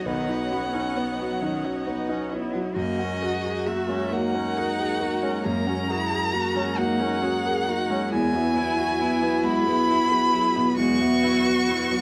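Melancholic and fragile, this neoclassical fragment for piano and strings drifts in a rubato 6/8 over Badd9, F#add9 and Eadd9 chords. A rich, focused solo violin carries the melody with vibrato up front beside a clear, intimate grand piano whose action noise is audible, while an expressive cello with portamento sings a second line and a smooth viola and a soft-attack studio string section sit in the background. A dark, harp-like synth pluck rings out arpeggios through chorus and tape echo, and the recording has a moderate studio reverb with close, detailed miking.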